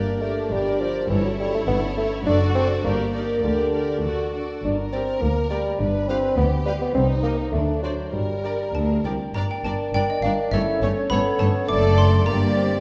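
A mellow, up-front bassoon plays the accompaniment in this playful, whimsical G minor film cue at 102 BPM in 2/4, cut from a longer piece, with an intimate sul tasto chamber violin section carrying the melody over a lush studio violin second line, a background viola section, a tight French horn section holding chords, and distant cello and focused double bass sections anchoring the bass, before a dry, woody xylophone joins the melody at 8.7 seconds, an airy flute section enters at 9.3 seconds and a dark, very quiet clarinet follows at 9.4 seconds, the whole cue sitting in a wet scoring-stage reverb that lends it a mischievous, magical air.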